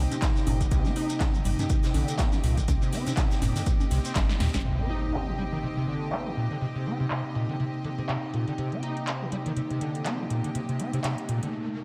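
A squelchy, resonant acid bass riff with a filter sweep drives this trippy, driving acid house excerpt, over a warbling, lo-fi tape-like pad, a floating bowed string section, a round analog bass, a punchy up-front electronic kick and a grainy shekere; the last three drop out at 4.6 seconds as an impact and riser arrive, while an electro analog drum machine with metallic hats, now under a filter sweep, and a very quiet soft-mallet kit carry on to a brief break at 11.5 seconds in a dreamy, reverb-soaked mix.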